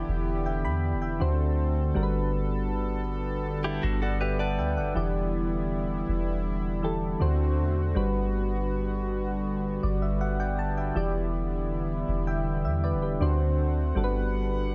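A softly lit, lightly reverberant mix with a dark, rounded low end opens this moody, late-night R&B passage at 80 BPM in a straight 4/4, cut from a longer piece and cycling through Em7, D7 and Gmaj7. Mellow, chorused electric-piano-like synth keys carry the accompaniment up front with fills at 3.8 and 9.5 seconds, while a shimmering, retro pulse-width pad holds sustained chords and a deep, soft 808-style bass anchors the bottom. A clean, direct-recorded electric guitar slips in briefly from 3.6 to 4.9 seconds with picked arpeggios colored by harmonic tremolo and tape echo.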